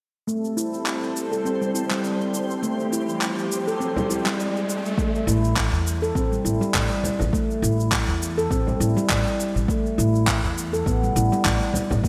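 Hypnotic and mystical, this organic downtempo piece at 102 BPM, swung on the 16ths in A minor pentatonic, opens with ringing, up-front handpan arpeggios under a filter sweep and delay, a smooth, detuned sawtooth pad that pumps with sidechain, and layered electronic shaker and handclaps in gated reverb. A twinkling granular shimmer enters in the background at 1.1 seconds, an electronic riser follows at 2.1 seconds, and a deep frame drum joins at 4.0 seconds. At 5.0 seconds the pad, shimmer and riser stop as a punchy electronic kick comes in, with woody pizzicato upright bass following at 5.3 seconds, the whole mix sitting in a lush hall with a bright 1980s-style digital sheen.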